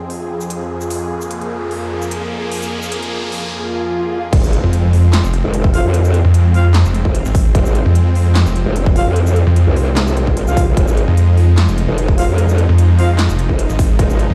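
This aggressive, menacing cut from a longer heavy wobble dubstep track in half-time opens on a lush, detuned supersaw pad pumping under a filter sweep, with crisp hats, a punchy snare and shaker from a big-room dance kit and an electronic riser and swell building, until the drop at 4.3 s brings an impact, an overdriven, up-front electronic kick and a wobbling, formant-filtered growl bass with chorus, joined at 4.6 s by a snarling, distorted unison saw bass, while mellow brass ensemble stabs with digital delay join at 5.7 s, the whole thing played through a big sound system into a bare stone room.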